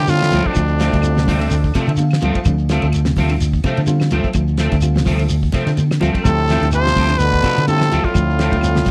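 Swung sixteenths at 127 BPM drive this defiant afrobeat cut in D dorian over a Dm7, where a dry, damped 70s kit with a fat snare and a round, up-front fingered bass anchor high-tuned congas, grainy shekere and woody claves, a very quiet clean guitar picks dark arpeggios, a twangy, slightly broken-up guitar with ensemble chorus and slapback echo throws stabs, and a reedy electric piano with spring reverb adds a fill at 1.5 seconds, while a raspy, growling trumpet leads over punchy trombone and bass trombone lines, all three horns dropping out after the opening and returning at 6.2 seconds, captured in a close 1970s-style studio sound.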